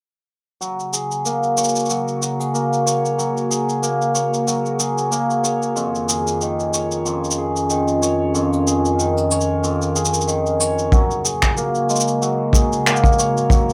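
A swung 93 BPM groove of up-front electronic shaker and finger snaps, recorded in a small room, carries this playful, pastoral folktronica fragment, with a punchy kick drum arriving at 10.9 s for the closing section. Over it, a shimmering, ringing cimbalom plays arpeggios through delay and plate reverb, its tone shaped by a filter sweep until 10.9 s. A dark, warbling, nostalgic lo-fi pad holds slow-attack chords drifting between Gbadd9 and Dbadd9/F, all set in moderate studio reverb with a rough home-demo character.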